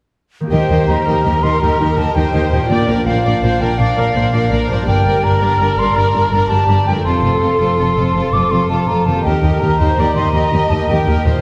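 A ringing, fingerpicked concert harp opens this soaring, heroic cinematic excerpt in 12/8 at 0.4 s, joined at 0.5 s by a lush symphonic violin section carrying the melody, a clear, intense studio violin section and a pure, up-front silver flute on second lines, a rich viola section with portamento in the accompaniment, and soft-attack cello and double bass sections on the bass, while a very quiet timpani note sounds at 2.7 s and a wet scoring-stage reverb sets the orchestra further back in the room.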